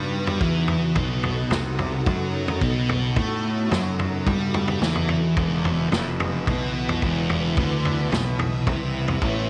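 A thick, double-tracked fuzz guitar riff with distortion and phaser opens this mysterious, trippy psychedelic rock excerpt in B phrygian dominant at 109 BPM, over a dark, round overdriven fingered bass and shimmering, chorused string-machine violin chords set bright in the background, while a punchy vintage drum kit of kick, snare and toms with a rolled-off top enters at 0.3 seconds, all in a light reverb as the harmony moves from B to E5 at 5.4 seconds.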